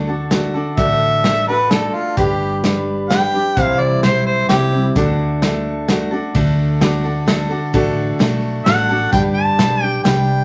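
Vinyl crackle and a wet club reverb frame this short, sunny slice of honky-tonk and classic country in an easygoing waltz time. A mellow, up-front harmonica carries the tune with light vibrato, soft attacks and scooped, jazz-tinged notes, soloing from 0.8 to 4.9 seconds and returning at 8.7 seconds. Underneath, a full-bodied picked dreadnought acoustic guitar, a dark, round, foam-muted electric bass and an airy, polished studio drum kit with a punchy kick, snare, hi-hat and ride move through D, G and C.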